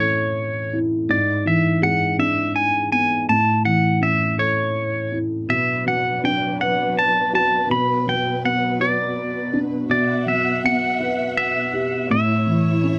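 Reflective and melancholic, this fragment of an acoustic folk-pop ballad moves at a slow 55 BPM in a straight 6/8, tuned slightly low to A4 = 439 Hz. A bright, clean electric pedal steel guitar carries the melody from the start, played with fingerpicks and slide. Its compressed tone, shaped by volume swells, sits up front. Beside it, a felt-muted upright piano plays the accompaniment in a soft, dark, boxy voice. The thick felt and audible action noise give the piano an intimate closeness. At 5.5 seconds a lush symphonic string section enters with bowed sustained chords, its ensemble sound expressive with vibrato and portamento, mixed well behind the two lead parts. The harmony drifts from A through E7/G# and Bm to Emadd9/B before settling back on A, all within a moderate booth ambience that keeps the sound close.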